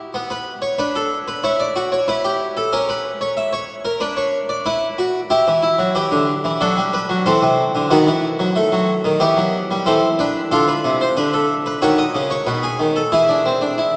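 Baroque-style classical fugue in three parts for solo harpsichord, cut from a longer piece, moving in a straight 4/4 at 92 BPM in E minor with a contemplative yet driving mood. The Italian-style harpsichord sits up front, brilliant and airy with a full, plucked sound from its three sets of strings, ranging from B2 to E5 and surrounded by the long, wet reverb of a cathedral. Its harmony starts on B minor and passes through half-diminished and diminished chords, and after a new section begins at 10.5 s it turns through B7 to settle on an E major chord at 13.1 s.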